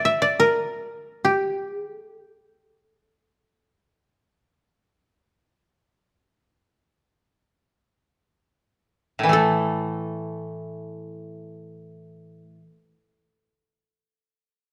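Calm, austere Japanese traditional chamber music in free time, this excerpt opens with a mellow, woody koto melody, plucked with fingerpicks and placed up front in a moderate recital-hall reverb, that gradually slows through the opening section until 9.3 s; just before then, at 9.2 s, a second, warmer koto enters to add a low accompaniment beneath it.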